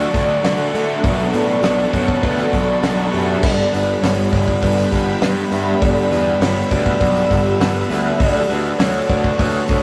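A hollow, woody synth lead with chorus and vibrato carries a wistful melody over a glassy, ethereal FM pad, two crunchy overdriven guitar riffs and a growly fuzz bass from the very start of this dreamy shoegaze and dream pop excerpt, with a loose indie drum kit joining at 0.1 s on fat snare, punchy kick, hi-hat and crash. At 101 BPM in 4/4 and G lydian, a very quiet clean guitar picks arpeggios and a jingly tambourine sits close and dry, while the background riff guitar stops at 3.4 s as the chords move from Dmaj7 and Bm7 to a long Gmaj7. The rough rehearsal-room recording is bathed in a stone room reverb, the dark, rolled-off drums sitting up front.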